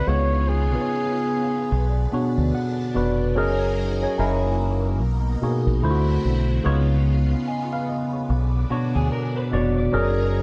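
R&B and neo-soul at a slow, sensual 73 BPM with a swung sixteenth feel, this short cut from a longer piece opens with a smooth-topped flugelhorn melody through tape echo that stops at 2.9 seconds, over a worn, slightly out-of-tune tine electric piano with phaser that adds a fill from 2.1 seconds, a swirling, bright string machine holding sustained chords under ensemble chorus, and a dark, round, punchy fingered dub bass up front, while a slightly broken-up, lo-fi electric guitar through spring reverb slips in a brief second line at 8.7 seconds, all moving through chords such as C#7, Bmadd9 and F#69 in a lightly reverberant room.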